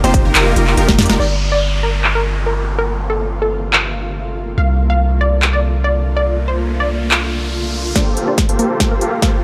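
Huge, detuned supersaw chords open this dreamy, emotional future bass excerpt in a half-time drop, pumping against the sidechain behind a low-pass filter, then return at 8.0 seconds for a build-up with a filter sweep. Throughout, a lush, wave-folded unison pluck carries the melody with a dub echo and its own pumping, while a second, very quiet ring-modulated pluck adds arpeggios only in the opening drop. Beneath it, a deep, sine-like 808-style bass sustains and decays, and an up-front trap kit of sharp snare, crisp hats, handclaps, ride and woodblock sounds overdriven and filtered, with a punchy layered electronic kick in the opening drop and the closing build. From 2.2 seconds a shimmering, ethereal pad with chorus, granular texture and an octave-up shimmer swells into the mix under a filter sweep, while a downlifter and riser fill the transitions, the riser climbing toward the build-up. 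The chords move through suspended and extended harmonies, and the whole track sits in light reverb.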